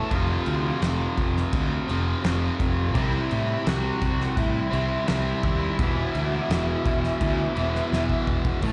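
A fuzzed, overdriven electric bass sits up front and anchors this bittersweet, cathartic excerpt of quiet-loud alternative rock, moving in a straight 4/4 over F5, C and E5 chords. Beside it, a bright overdriven electric guitar plays a picked riff up front, alongside a compressed fuzz guitar tucked in the background that plays a riff of its own, both carrying slapback echo. An octave-fuzz lead guitar with a dark, distorted tone carries the melody on top, also with slapback echo. A loose indie drum kit with a punchy kick, fat snare and dark cymbals pumps in its room, rolling into a fill at 7.9 seconds before a clean, twangy twelve-string electric guitar cuts in with arpeggios at 8.6 seconds. The whole performance sounds like a live gig heard through a small club's PA, with club reverb and a muffled top end.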